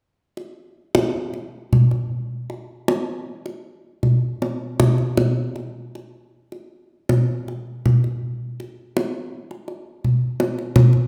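A tight, acoustic kendang sits up front from 0.4 s to 11.0 s in this shimmering, hypnotic gamelan excerpt, laying down uneven beats in 4/4 at 79 BPM inside a wet recital-hall reverb with a 1.4-second tail.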